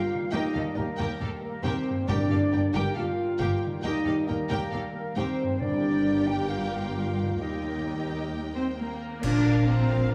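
Opening at once on a dark French horn section's sustained chords beneath a warm violin melody with vibrato and portamento, this heroic, adventurous film-score excerpt at 136 BPM in 4/4 layers a rich second violin line, mellow clarinet, silver flute, rich violas, clear trombones and very quiet ringing harp arpeggios, with cellos and double basses entering at 0.3 seconds, soft-mallet timpani at 2.1 seconds, bright cymbals with a cymbal swell and concert bass drum at 5.6 seconds, and a distant oboe joining for a final accent on Bb at 9.2 seconds, all bathed in wet scoring-stage reverb.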